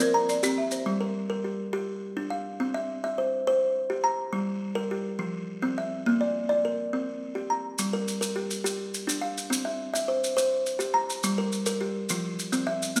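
A buzzing kalimba with a bright thumbnail pluck and a hollow box sound sits up front, cycling arpeggios through the whole of this trance-like, hypnotic passage of southern African traditional music in an mbira-style interlocking cycle. The piece is in 12/8 at 139 BPM in G dorian, moving mainly between G minor and C. A dry, rustic folk marimba struck with hard mallets adds dark, woody arpeggios only for the first second, and grainy, mellow maracas return close and dry from 7.8 seconds. The whole is set in the wet reverb of a recital hall, with the sense of a church or concert hall.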